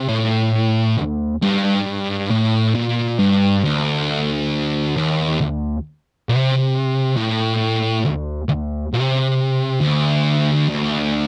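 Ominous and heavy, this short metal fragment at a slow 68 BPM in straight 4/4 features a lone thick, double-tracked electric fuzz guitar, picked low between D2 and C3 and sitting up front in a dry, close 1970s-style studio sound, with its opening passage giving way to a new section at 3.6 seconds.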